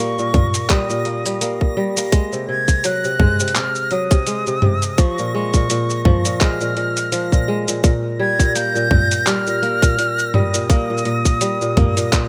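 A digital ambience surrounds this short, pastoral folktronica fragment, which is cut from a longer piece and sways with a gentle swing. A crisp, ringing kora plays fingerpicked arpeggios in a low register from the very start, sitting up front, while an airy metal jazz flute carries the melody high above with expressive vibrato, soft attacks and a tape echo trailing its phrases. Far behind them, a reversed, granular texture swells on one bright, detuned note, dreamy and sustained in its own built-in reverb. At 0.2 seconds a lo-fi sampler-style kit joins, its handclaps, hi-hat, shaker and toms pitched down, muffled and compressed with a tape-warm haze, and a tight electronic kick drum, overdriven and the most forward part of the mix, lands just after. Both drum parts carry the character of a small room, giving the warm harmony that moves from Eb through Ab7 and Bbm7 back to Eb a steady pulse.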